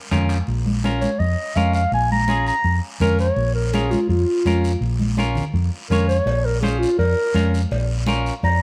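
Cumbia in Bb minor at 166 BPM, driving and fiery, with a dark, up-front clarinet soloing over a Bbm chord, a round hollow-body bass, a bright, clean picked semi-hollow guitar, compressed, saturated congas in the background and a raspy guiro, while distant, ringing timbales and cowbell sound briefly at the start and return from 6.3 seconds, all in a short excerpt with light reverb and a warm production.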